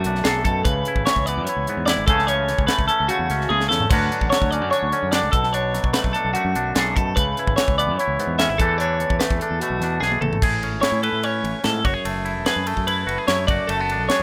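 Guitars, bass and drums enter together in this playful, intricate math rock and Midwest emo excerpt, moving at 147 BPM in a straight 4/4 in A major, tuned slightly sharp to A4 = 442 Hz. Up front, a clean, fingered electric guitar with a twangy edge plays accompaniment across its range, while a bright, compressed twelve-string electric guitar picks arpeggios in a higher register, shimmering through a harmonic tremolo. Underneath, an overdriven fingered bass growls in the low register with a direct, amped tone, and a polished fusion kit with a high-tuned snare and tight kick sits forward in an airy studio room, adding drum fills at 3.5 and 10.0 seconds. The harmony runs through jazzy seventh chords such as Bm7, C#m7, Amaj7/C# and Dmaj7 before an E7sus4 leads into a new section at 10.4 seconds built on Amaj9, F#m9 and D6/F#. The sound is dry and close, with the rough feel of a home demo mix.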